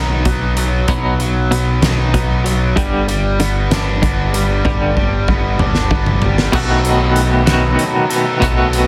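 Indie rock in a jangly, upbeat 6/8 sway, this short clip pairs an up-front overdriven guitar riff, lush with chorus and tape echo, with a bright, twangy clean guitar under tremolo, over a growling, round picked bass with overdrive and a loose acoustic kit in a pumping room, with a fat snare, punchy kick and dark cymbals, that enters at 0.3 seconds and rolls through a fill from 4.7 seconds before the chords move from B and G to B7, all in light studio ambience and a dense, heavily limited modern master.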